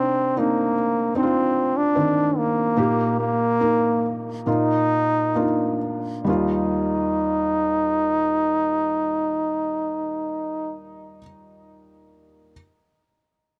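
A brilliant, punchy trombone and a soft, felt-muted upright piano open this short extract from a pop ballad together, carrying a hopeful, heartfelt mood in a straight 4/4. The trombone sings the solo melody up front with a pop-style vibrato and a close-miked presence, staying in a compact middle range. Beneath it, the piano's mellow, intimate accompaniment spans from deep bass notes into its middle register, its natural tone sitting close to the listener. The music slows over the first 6.3 seconds as the harmony moves from a C minor add9 colour through Eb over Bb and a Bb suspended chord before settling on Eb add9. The trombone falls silent at 10.8 seconds, leaving the piano alone until 12.5 seconds, all captured in a dry, close studio sound with a 1970s character.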